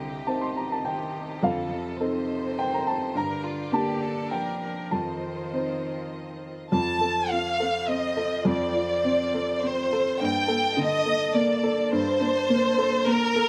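From the first moment, a dark, woody upright piano plays the accompaniment, and an expressive chamber violin section carries the melody with vibrato and portamento, both touched by slapback echo, while a rich, smooth solo cello traces a second line and a clear, intense symphonic string section sustains chords in the background, giving this melancholic, longing neoclassical fragment a rubato 3/4 feel at 104 BPM, a dry open-air sound, and harmony that moves from Cm7 through F7 and Gm to F before settling on Gmadd9 at 10.2 seconds.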